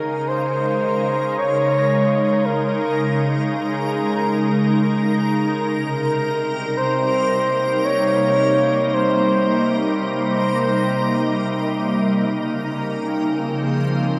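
In free time, this melancholic, reflective ambient excerpt in Bb dorian drifts through Bbm11, Cm7 and Dbmaj9 in a wet spring-reverb space with an echo-heavy mix. A mellow, punchy flugelhorn plays a solo, classical-style melody through shimmer reverb and dub echo until 11.6 s, over a pure, bright organ-like pad of slow-attack sustained chords with ensemble chorus and shimmer up front. From 0.2 s, a reversed, granular, dreamy texture sits in the background with its own shimmer.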